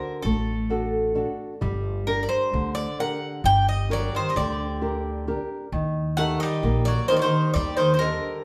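Counted in a straight 9/8 at 132 eighth-note beats per minute, this short excerpt from a Greek bouzouki band piece carries a reflective, melancholic mood. A lead bouzouki, picked on its paired strings, carries the melody up front with a bright, metallic ring and some octave-doubled courses. Beneath it, a nylon-string guitar is fingerpicked up front, its small, dark tone catching an occasional finger squeak. A pizzicato upright bass on steel strings adds a woody low end, also up front. At 3.9 seconds a second bouzouki enters with a low, warmer second line, keeping the same doubled-string shimmer. The harmony moves from D to G minor and settles on E-flat at 5.7 seconds, and the band plays live together in a large studio whose lush reverb gives the sound a full, roomy bloom.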